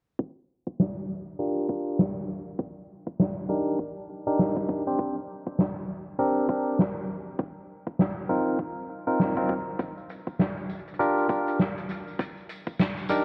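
A barky, bright tine electric piano plays clean stabs in this swaggering, playful glitch hop excerpt at 100 BPM in G minor, pumping under sidechain, filtered and echoed by digital delay as a filter sweep runs through the whole passage over chords moving from Gm7 through Ebmaj7, Bb69 and F7sus4. A tight, tape-toned electronic kick sits up front with a soft-mallet kit whose hi-hat and medium-tuned snare carry natural hall character and gated reverb, all swinging on the 16ths. A jingly tambourine joins in the background at 9.8 seconds, and the whole cut is set in a lush hall reverb with a bright 1980s-style digital sheen.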